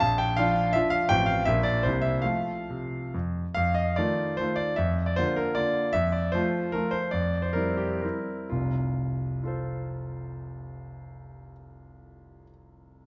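A clear, up-front concert grand piano with a deep bass and a vintage character plays a proud, rustic romantic classical dance in 3/4 and F major, its dotted rhythms moving with rubato between 116 and 174 BPM and slowing from 5.4 to 8.5 seconds, all heard through close, detailed microphones in a reverberant recital hall in this short fragment of a longer piece.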